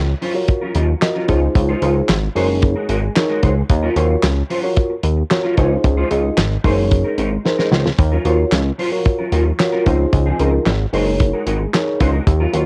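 A home-cassette sound frames this danceable, slick early-eighties boogie funk cut at 112 BPM in Eb dorian, where a glossy, up-front chorused synth bass with a plucky filter drives under a dry, fat-snared 70s drum kit with tight kick, hi-hat and handclaps, while a clean, dark fingered electric guitar riff and a soft, round FM electric piano with chorus sit further back over a cycling Ebm9, Dbmaj9 and Gb69 progression, broken by a drum fill at 7.4 seconds.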